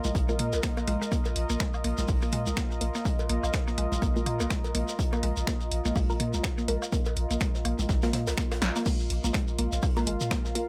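Clinical and hypnotic, this excerpt of minimal techno runs at 124 BPM in 4/4 with a 58% swing on the sixteenths, built on an up-front, tape-tinged electronic kick and a punchy analog drum machine of snare, hi-hat, crash and finger snaps, joined by a deep, sine-based sub bass that pumps against the kick and a faint layer of dark, brushed jazz kit. Overdriven congas, cowbell and woodblock sit in the background with digital delay alongside a grainy, close shekere, while a woody FM mallet pluck carries the riff through chorus and tape echo and a muted, detuned dub chord stab drifts under phaser and delay. A nostalgic, warbling lo-fi pad holds a chorused haze throughout, and after a drum fill at 8.6 seconds the track drops into a new section at 8.9 seconds.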